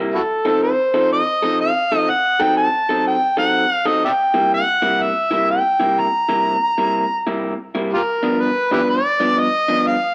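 Heard through a small room's ambience and a moderate echo-chamber reverb, this swaggering, soulful swung blues excerpt sets a slightly broken-up, lo-fi electric guitar riff from a small old amp beneath an up-front, gritty, overdriven harmonica solo in a jazz style, rich with vibrato, scooped notes and tongue slaps, over F7, F#dim7, C7 and G7.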